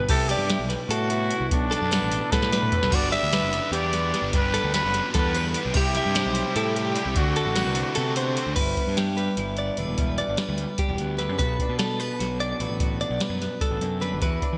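This bright, playful excerpt of math rock and midwest emo opens at once with a raspy, growling trumpet carrying the melody up front. It rides a light vibrato and a trail of delay, over a twangy twelve-string electric guitar in the background and a direct-recorded clean guitar picking scooped, compressed arpeggios with a subtle chorus. A punchy fuzz bass, overdriven and up front, anchors the low end. A soft vintage rhythm box keeps time in 7/8 at 298 BPM counted in eighths, its deep kick, crisp snare and metallic hats treated with gated reverb, alongside crash cymbal and toms. At 2.9 seconds a double-tracked cranked stack guitar joins behind the others with an overdriven riff colored by analog chorus. The kick and snare drop out briefly from 8.0 seconds, the trumpet stops at 8.4, and the stack guitar falls away at 8.6 as the full rhythm box returns. The clean guitars and bass then move through G major harmonies such as G6 and Bm7 under a lush hall reverb and a bright 1980s-style digital sheen.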